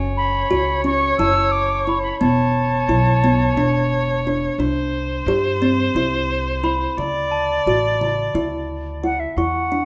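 Closely miked and lightly reverberant, this playful, shimmering excerpt of contemporary chamber music in 7/8 sets a pure, mellow concert flute melody, heard from 0.2 to 4.2 seconds and again from 9.0 seconds, over a dark, bowed viola second line with vibrato, hollow thumb-plucked kalimba arpeggios, a woody pizzicato upright bass up front and a soft, bell-like glockenspiel played with rubber mallets in the background, as the harmony moves from F#m7 through E7sus4 and C69 to Dmaj7sus2.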